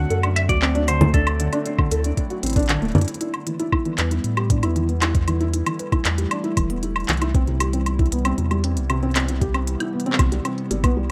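IDM with an eerie, melancholic mood, this excerpt opens on a brief, bright, clean semi-hollow electric guitar melody carrying 12-bit sampler grit and dub echo. The electronic kick drops out at 2.7 s, and the guitar stops at 2.9 s as a drum fill arrives, just before the harmony moves from D7 to Em7 at 3.2 s. Underneath, a warbling, detuned, lo-fi tape-like pad holds sustained chords through chorus, phaser and its own reverb, while a felt-muted upright piano plays dark, intimate arpeggios with audible action noise and dub echo, and a round sine sub bass sits deep below. An up-front organic electronic drum kit of cabasa, congas, handclaps, crisp hi-hat and woodblock is soon joined by a soft, tape-tinged kick in a rough home demo mix with light reverb, reaching Cmaj7 at 7.3 s.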